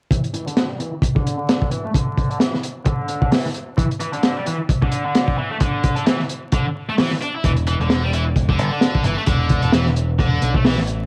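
A funky, playful breakbeat groove opens with a bright, double-tracked high-gain guitar riff under a filter sweep, alongside a crunchy, swung breakbeat kit with a high-tuned snare, tight kick and gritty, rolled-off top. The guitar also carries 12-bit sampler grit, analog delay and cassette tape colour, and the drums share that tape saturation. An overdriven picked electric bass joins up front at 7.4 seconds, while the whole cut, lifted from a longer piece, sits in a homespun cassette sound with light reverb and vinyl crackle.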